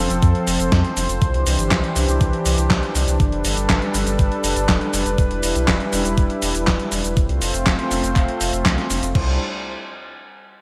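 Italo disco with a playful, danceable lift, this short cut from a longer piece moves in a straight four-beat pulse. A smooth, detuned sawtooth pad sits up front holding sustained chords through a chorus effect, while a deep, round analog bass with a fast attack and tube saturation anchors the low end from the first second. A gritty, tape-toned sampler-style kit brings cabasa, handclaps, hi-hat, crash and a medium-tuned snare, compressed and dressed in studio and gated reverb, joined by a thumpy, overdriven electronic kick that stands a little louder than the other parts. The harmony drifts from F through Cadd9 and Gadd9 to Em7 before returning to F, landing on Cadd9 at 9.2 seconds as the music turns toward a new section. A moderate plate reverb and bright 1980s-style digital production give the whole a glossy, retro sheen.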